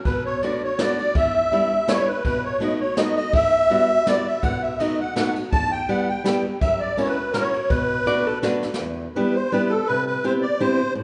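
Musette waltz in a lilting, gently swung 3/4, nostalgic and whirling, cut from a longer piece and moving through minor-key changes such as Bm7, Em7, F#7 and Cmaj7. A reedy musette accordion carries the melody up front, its shimmering, wet tuning giving the line a dark, smooth glow. Close beside it, a fingerpicked steel-string acoustic guitar supplies bright accompaniment, with finger squeaks audible in the playing. A brushed jazz kit with boomy kick, medium-tuned snare and dark ride cymbal keeps time until a drum fill at 8.6 seconds, and a clean, fingered hollow-body electric guitar adds a brief second line from 8.1 to 8.8 seconds. After 8.8 seconds the accordion and acoustic guitar continue into a new section, all set in a wet recital-hall reverb with a soft, rolled-off top end.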